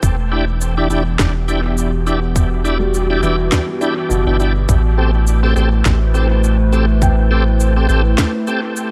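A swung sixteenth-note groove at 103 BPM in 4/4 anchors this short, spacious ambient dub fragment in E minor, built on a tight electronic kick and a woody electronic snare with cabasa, both carrying a tape-warm, small-room character and dub echo on the snare and cabasa. Underneath, a soft, round sub bass sits up front in the deepest register, holding sustained tones until about 8.2 seconds. A warbling, nostalgic pad of detuned square and triangle waves spreads slow-attack chords through chorus and its own reverb, lending a lo-fi, mellow haze over the move from Em7 to Am7 at 4.7 seconds. Deep in the background, a felt-muted upright piano plays soft, intimate arpeggios trailed by dub echo. Entering at 0.3 seconds, a bright, shouting tonewheel organ punctuates the mix with clean stabs, colored by chorus vibrato, a slow rotary speaker and dub echo, all set in light digital ambience.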